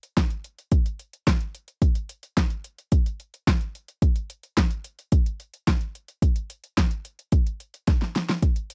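A dry, close 1970s-style studio sound frames this short, late-night, danceable funk cut at 109 BPM in a straight 4/4, where an up-front, tape-warm electronic deep house drum kit layers a deep kick, fat snare, metallic hi-hats and handclaps before a drum fill from 7.9 to 8.4 seconds.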